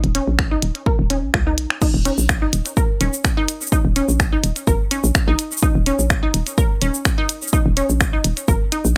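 A straight 4/4 pulse at 126 BPM drives this sparse, hypnotic minimal techno excerpt, where a punchy, layered electronic kick and a clicky, tape-warm kit of hi-hat, cabasa, finger snaps and crash cymbal sit up front beside a hollow, bouncy FM bass that pumps under sidechain, while a juicy, squelchy resonant blip pluck, detuned and bright with subtle chorus and digital delay, also pumps through a dry mix that drops at 1.8 seconds.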